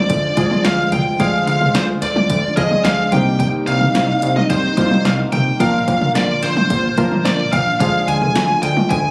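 A distorted, bluesy electric lead guitar sits up front, its picked melody trailing tape echo across a cool, driving synth-pop passage cut from a longer piece, moving through Ddim, Cm7 and Bb. Beneath it, a punchy analog drum machine with cowbell, hi-hat, toms, snare and kick keeps a straight pulse alongside a glossy chorused synth bass with a plucky pulse-wave tone, and round, detuned analog keys enter at 0.4 seconds. A swirling, airy phased pad holds sustained chords in the background, and the whole take, captured on a phone in the room, carries a light reverb.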